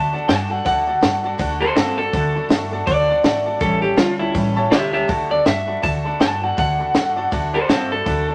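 Rockabilly with a rowdy, retro spirit, this short excerpt cut from a longer piece swings its eighth notes at 162 BPM in D major, moving from D to A7 at 3.6 seconds and back to D at 5.1 seconds. An electric guitar through a small old amp carries the melody up front, its twangy, slightly broken-up tone bathed in spring reverb. Alongside it, a picked steel-string acoustic guitar with a full-bodied jumbo sound and a bright upright piano, brilliant and polished with long sustain, fill out the accompaniment, the piano sitting in the background. A pizzicato upright bass with steel strings gives a dark, thumpy, woody low end. A compact cocktail drum kit enters at 0.3 seconds and sits up front, its dry, high-tuned snare, punchy kick and hi-hat driving the swing, while a moderate studio reverb and a layer of vinyl crackle lend the recording an old-record feel.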